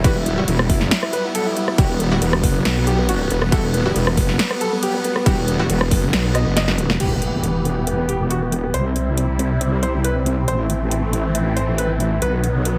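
Aggressive and heavy, this half-time wobble dubstep cut opens straight on a drop, with a saturated, detuned wobble bass sitting up front and anchoring the low end throughout. A punchy, layered electronic kick drives the first 6.0 seconds alongside a big-room dance kit whose snare snaps and whose metallic hats, rim clicks and crashes carry on to the close. Over the top, huge, lush supersaw chords pump against the beat through a phaser, while a clear concert grand piano with tape echo carries the melody with a smooth, vintage tone. A bold, bright orchestra-hit-like stab with a filter pluck and built-in reverb sits in the background until 5.6 seconds. A drum fill and band accent lead into the second section at 7.0 seconds, where an electronic impact lands in the background and a filter sweep runs across the supersaw chords as the harmony moves from E minor through C, A minor and B. The whole mix is heavily compressed, with a radio-like digital ambience.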